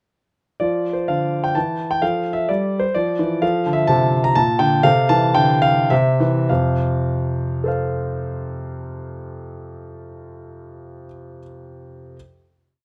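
Closely miked and detailed with a light reverb, this short, complete classical-period sonatina for solo concert grand piano feels elegant and playful in a rubato three-time, its intimate, vintage tone revealing audible action noise as a single-line melody moves over an independent, deep bass line in counterpoint, before slowing down from 2.7 seconds and settling on a final F chord from 6.5 to 9.9 seconds.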